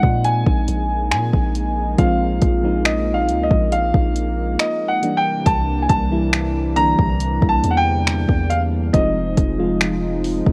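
The rhythm sits in a straight, unhurried 4/4, carried by an electronic R&B drum kit of finger snaps, hi-hat and a soft kick, overdriven and re-recorded in a small room so it sounds up front. This short excerpt of contemporary R&B has a longing, late-night mood, anchored by a deep, sine-toned 808-style bass whose long notes decay after a fast attack. A mellow FM electric piano with a round, dark tone, a noise layer and chorus plays the accompaniment, while a detuned sawtooth analog pad, slow to bloom and smoothed by its own chorus, sustains the chords beneath. Forward in the mix, a natural-sounding grand piano carries the melody in its upper register. The harmony moves from Bb7sus4 to C7 at 5.0 seconds and settles on Fm7 at 8.9 seconds, all heard dry and coloured by worn, warbling cassette-tape pitch drift.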